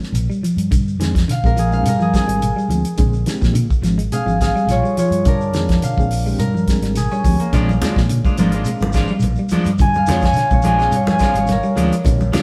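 Afrobeat at 106 BPM in 4/4, with a light swing on the sixteenths, this joyful, funky excerpt sits in Bb mixolydian over a single Bb7 chord, cut from a longer piece. A ringing, fingerpicked concert harp carries the melody up front as a solo throughout, spanning Bb3 to Ab5. Beneath it, a damped 70s drum kit with a fat snare and tight kick plays hi-hat, kick and snare, dry and forward, while a round, punchy fingered electric bass anchors the low end and a grainy shekere sits in the background. A reedy electric piano with light overdrive and tremolo supplies accompaniment from behind, and a dark, clean semi-hollow guitar adds arpeggios from 0.3 seconds. At 7.5 seconds a twangy, slightly broken-up electric guitar enters with stabs alongside thick-skinned, medium-tuned congas, all heard as a band playing live in a moderate stone room.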